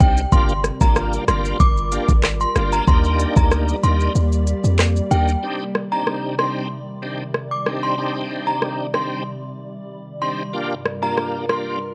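Dancehall at 94 BPM in C minor, this hypnotic, sultry passage cut from a longer piece rides a straight 4/4 groove on an up-front electronic island pop drum kit, with a knocking kick, smooth hi-hats, handclaps, rim clicks and shaker. A deep, boomy 808-style bass with a sine tone and fast, decaying attack sits forward in the mix until 5.4 seconds, its kick partner dropping out from 4.2 seconds just before. Above, a chiming, inharmonic FM synth chime carries the melody high in the register, ringing through ensemble chorus, analog delay and plate reverb. A bright, shouting tonewheel organ with audible key click, chorus vibrato and a slow rotary speaker supplies the accompaniment, while a glassy, ethereal FM pad holds sustained chords with a slow attack, long release and sidechain pumping. The harmony moves from Gm7 to Ebmaj7 and on to Cmadd9, returning to Gm7 at 10.5 seconds, all set in light reverb with the character of a home cassette recording and tape coloring on the drums, organ and pad.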